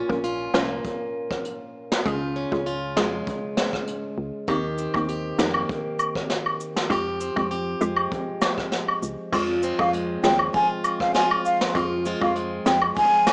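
A straight 4/4 groove at 99 BPM sets this hypnotic, sultry dancehall piece in F minor, cut from a longer work, with a jazz brush kit of boomy kick, dark cymbals, rim click and hi-hat sitting up front in a roomy space beneath an organ-like FM bass with a dark, percussive attack. A boxy, picked, plugged-in swing-style acoustic guitar plays arpeggios over Bbm, Db, Eb6 and Fmadd9, while a bouncy, detuned square pluck adds chorused accompaniment that pumps with sidechain, and woodblock and cabasa join at 4.5 seconds. At 9.8 seconds a breathy, close-miked concert flute enters with a mellow straight-tone melody over Fm, all under light reverb and a small-speaker cassette-tape sound.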